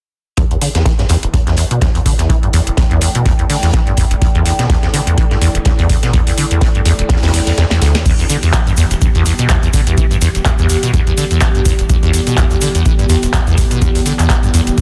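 Gritty and hypnotic, this acid house excerpt in E minor pentatonic at 125 BPM with a 16th-note swing rides a squelchy, resonant sawtooth acid bass riff under a filter sweep, pumping against a deep electronic kick and a booming analog drum machine with metallic hats and handclaps, while a crunchy breakbeat kit sits in the background until a drum fill and kick dropout near 8.1 seconds, where a detuned, moody analog pad with 12-bit grit and a grainy tube shaker join the dark ambient pad that has hovered since 1.3 seconds.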